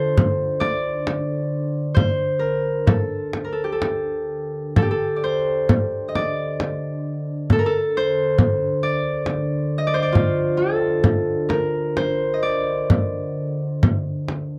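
Dry and close, the recording has the intimate, unadorned feel of a 1970s studio session. This short cut from a longer Caucasian folk lament moves at a slow 66 BPM in a free, rubato 3/4, mournful and solemn in D phrygian. A bright, ringing Celtic harp carries the fingerpicked melody up front, ranging from Eb4 to Eb5. Beneath it, a deep, dark ambient pad holds a sustained drone on D3, its vintage sawtooth and sine tones thickened with a sub octave, a warbling chorus and its own reverb, with a slow attack and long release. A frame drum enters at 0.2 seconds, struck with hard hands, and sits prominently in the mix with an acoustic small-room tone.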